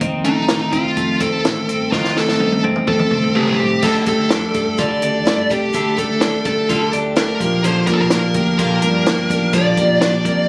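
Captured on a phone in a small, lightly reverberant club room with vinyl crackle and compression, this bittersweet, wistful jangly indie pop excerpt at 126 BPM puts a bright, twangy twelve-string electric guitar's arpeggios up front beside a dark, distorted high-gain lead melody that enters at 0.3 seconds, over a growly, hollow-body fretless bass in the background and a dry cocktail kit with a high-tuned snare whose fill starts at 1.9 seconds, before a full-bodied picked dreadnought acoustic guitar joins at 3.8 seconds as the chords move from F7 to Dsus4 and Bb6.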